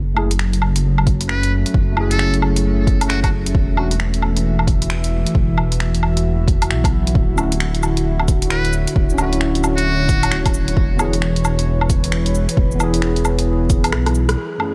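A swung 133 BPM future garage groove in 4/4, with a punchy electronic kick and a layered deep house kit of cabasa, finger snaps, hi-hat, rim click and woodblock, carries this ghostly, melancholic clip over a dark detuned saw bass, a warbling, nostalgic pad with chorus, and a gritty overdriven tine electric piano in the background that drops out between 3.9 and 7.4 seconds, while a buzzy muted trumpet with light vibrato and scooped notes plays brief melodic phrases through tape echo and sampler grit, all under vinyl crackle, until the kick falls away at 13.9 seconds for a drum fill and a closing band accent.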